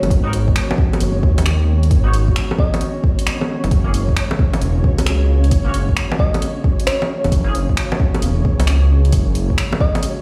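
A warbling, nostalgic pad, a rumbling detuned saw bass up front, bongos, finger snaps and hi-hat from an overdriven deep house kit, a flickering grainy texture and bell-like FM electric piano melody open this melancholic, rainy future garage excerpt together, joined at once by a deep overdriven electronic kick and a bright, clean semi-hollow guitar in the background that stops at 7.5 seconds, while the sparkling piano drops away and returns at 6.2 seconds over a pumping, swung groove moving from G#m7 to F#add9, all heard through a big sound system in a bare stone room.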